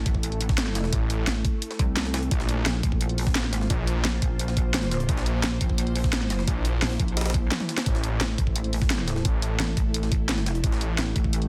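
A swarming, tense drone and a pulsing, heavy wobble bass open this aggressive, dark technical drum and bass excerpt at 173 BPM in A phrygian, with the drone's evolving, granular chords pumping against the sidechain as the harmony moves from Am to Bbsus2 and then to A5 at 7.9 seconds. A knocking, overdriven electronic kick and an up-front kit with a cracking snare, hi-hats and toms drive the track, backed by a gritty, pitched-up jungle sampler-style kit in the background with filtered hats and a high-tuned snare, and a drum fill arrives at 7.5 seconds. From 0.9 seconds a thick, detuned saw bass adds lush, saturated weight beneath a dense, heavily limited master in a digital ambience.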